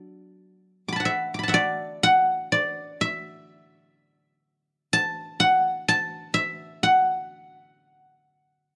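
This is a short passage of Chinese traditional music for solo plucked strings, cut from a longer piece, with a pastoral, flowing mood. A single guzheng plays from 0.0 to 8.4 seconds, moving freely in rubato around a pulse of about 62 BPM in 4/4, in a D gong mode. Played with fingerpicks, its acoustic tone rings out silvery across a range from F#3 up to D6. The instrument sits up front in the mix, heard close and dry in the manner of a 1970s studio recording, with just a touch of small-room reverb around it.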